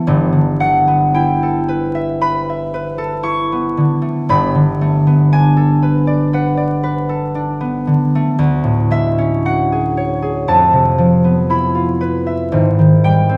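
The recording places the listener further back in a recital hall, where a wet reverb with a 1.5-second decay gives the sound depth and a vinyl crackle runs beneath it. This is a gentle, wistful classical piece for solo concert harp, lifted from a longer work and lasting 13.4 seconds. The harp is acoustic and fingerpicked, with a warm, ringing tone that still sits up front despite the distant room. It spans a broad range from G1 up to C#6, and its rubato phrasing lets the music breathe in an unhurried way. Moving through chords such as Bm7/G, Dmaj7#11 and Fmaj7#11, the harmony shifts into rich, floating colours that sustain the reflective mood.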